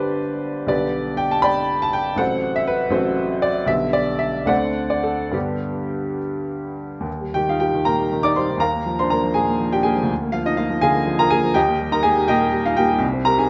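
Set in a rubato 6/8 at 67-84 BPM by the dotted quarter, this warm, lyrical romantic character piece, cut from a longer work, features a solo upright piano, woody and vintage with long sustain, heard up front through close, detailed microphones in a moderate recital-hall reverb, opening in G major on a high G5 and shifting at 7.1 s to Eb major until its close at 13.5 s.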